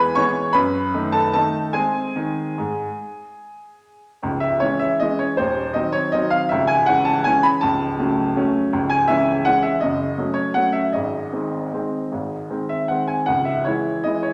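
A waltz in 3/4 moves with a free, rubato feel, its tempo drifting between 140 and 172 BPM. This short classical excerpt, cut from a longer piece in C# minor, sounds nostalgic and elegant. A single upright piano plays alone throughout, clear and woody in tone, open and up front, ranging from C#1 to C#6. The opening phrase leans on E, a diminished chord and G# before a new section begins at 4.2 seconds, settling into C# minor and circling through F# minor and diminished colours. A return to G# at 10.9 seconds leads the harmony home to C# minor at 13.3 seconds. The piano sits in a recital hall reverb with a wet, lingering decay of 1.3 seconds.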